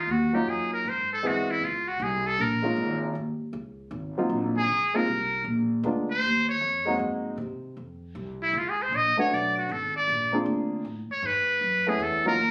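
A buzzy, breathy metal-muted trumpet solos up front through this relaxed, playful small-group swing and bop jazz in Db major at 156 BPM, backed by a woody pizzicato upright bass and a mellow baby grand piano with audible action noise, all caught on a phone in a club room with light reverb.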